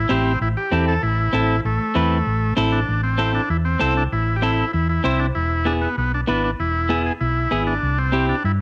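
A buzzy, vintage combo organ with light vibrato carries the melody over a round, punchy hollow-body bass from the first moment, joined by a clean, picked electric guitar in this driving, passionate cumbia fragment at 194 BPM in A minor, moving from Am to E at 5.4 seconds and C at 7.8 seconds, all wrapped in moderate spring reverb and the soft grain of a home cassette recording.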